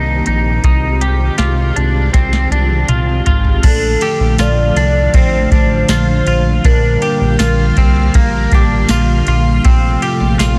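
Floating and ethereal, this dream pop excerpt moves at 80 BPM in a straight 4/4, drifting from Cm7 through Fm9/C to Gm7/Bb before settling on F/Bb. A lush string machine holds sustained chords with an ensemble chorus shimmer, while a bright, twangy clean electric guitar plays arpeggios through analog chorus and tape echo. Underneath, a fat analog bass sits up front with a thick, detuned sawtooth tone, and a soft vintage rhythm box enters at 0.3 seconds with a deep kick, crisp snare, metallic hats and overdrive, rolling through a drum fill before the new section. A very quiet, woody koto adds a dry texture from 1.4 seconds, and at 3.6 seconds a warbling, nostalgic lead carries the melody with vibrato, chorus and tape echo until 8.1 seconds. The mix sits in light reverb with a dense, heavily limited modern master.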